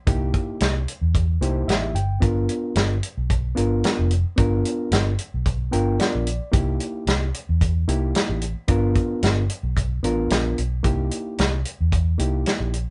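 A straight-eighth groove at 111 BPM in 4/4, with a light 53% swing on the sixteenths, drives this swaggering, rollicking soul blues in C mixolydian, cut from a longer piece. The drum kit plays hi-hat, kick and snare with a tight kick, a medium-tuned snare and a rolled-off top, sitting up front in a mid-forward, snug-booth sound. Underneath, a vintage fingered electric bass runs low from F1 to E2, dark, foam-muted and round through its amp. An overdriven reed electric piano comps between Bb3 and G5, gritty and reedy through a combo amp, and breaks into short fills at 1.1 and 5.5 seconds. The harmony moves between C7#9 and G7#9, returning to C7#9 as the section repeats at 10.8 seconds. The band sounds as if playing live together in one room, dry with little reverb and a dull top end.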